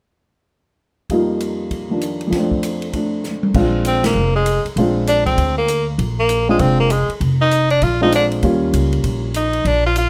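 Small-group swing and bop jazz at 196 BPM with a relaxed, swinging feel, cut from a longer piece, where a woody upright piano and an airy drum kit with dark cymbals and a boomy kick open the track, a drum fill at 3.2 s leads into the upright bass and an edgy, forceful tenor saxophone with vibrato and scooped notes, a band accent lands at 4.0 s, and the chords move from F7sus4 to Bb9 and Eb9 in a studio with moderate reverb.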